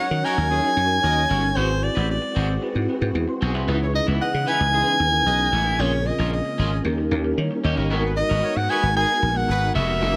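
Urban and upbeat, this straight 4/4 pop snippet from a longer piece puts a clear, jazz-style soprano saxophone up front with vibrato and scooped notes, backed by a smooth-topped horn section in the background, a bell-like tine electric piano with ensemble chorus, a silky, very quiet vintage string machine, a twangy, slightly broken-up picked electric guitar riff colored by lush chorus, and a growly, foam-muted thumbed slap bass that sits punchy and direct, all in a light reverb over a D#m7 to G#m7 progression.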